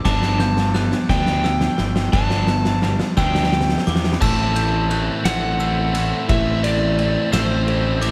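A round, fuzzed-out electric bass sits up front in this cathartic, brooding post-rock excerpt, its overdriven tone anchoring a slow, straight 6/8 pulse. An oversized, low-tuned acoustic drum kit with a punchy kick, fat snare and dark cymbals sounds saturated and gritty in a stone room, driving a build-up and drum fill over the opening G chord until 4.2 seconds. Above it, an overdriven slide guitar played with fingerpicks carries a warm melody through tape echo. A biting overdriven guitar plays a riff until 3.8 seconds, and from 4.2 seconds, as the harmony moves to A minor, a crunchy, up-front overdriven guitar takes over with its own riff. Underneath, a very quiet, twangy, compressed twelve-string electric guitar picks clean arpeggios, while a sparkling, bell-like glockenspiel with brass mallets rings through tape echo in the background, all set in light reverb.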